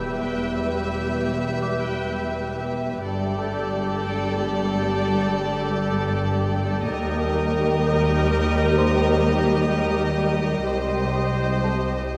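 A huge, dark impact opens this ominous, tense cue from a suspense film score, fading by 3.1 seconds while bowed strings sound throughout at a slow 63 BPM, with a focused violin section on a second line, an expressive viola section in accompaniment, and lush cellos alongside a distant, soft-attacked double bass section anchoring the low end. Above them, a bubbling, detuned sawtooth texture with resonant random filter steps, chorus and its own reverb holds sustained chords, while a delicate, bell-like celesta sparkles in the background. The harmony drifts uneasily from Em through Gsus2 and D# to Cm in a lightly reverberant studio sound, and the passage is cut from a longer piece.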